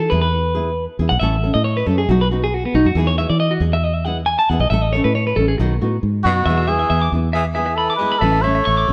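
Set in a light reverb, this danceable, warm highlife cut from a longer piece swings gently in 4/4, with a bright, twangy clean electric guitar spinning compressed arpeggios through a slapback echo as the featured voice until 6.5 seconds. A round, foam-muted fingered bass sits up front, and a dark, woody nylon-string guitar fingerpicks a full-bodied accompaniment beneath. At 6.2 seconds a veiled cup-muted trumpet takes the melody up front with light vibrato and scooped notes, and a raspy, growling tenor saxophone adds a gritty second line from 6.3 seconds.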